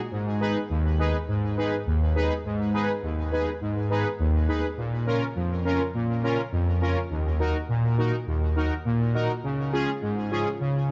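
Dark, hall-drenched production with a lingering 1.6-second reverb frames this short melancholic, nocturnal pop fragment at 103 BPM in G# dorian, where a lone analog synth brass, fat and brassy with sawtooth bite, a sub-octave underpinning, filter sweep, vibrato, chorus and digital delay, sits up front with bold, sustained, fast-attack tones ranging from D#2 to B4 over chords moving from G#m to A#m at 4.8 seconds, D#m at 7.1 seconds and C# at 9.4 seconds.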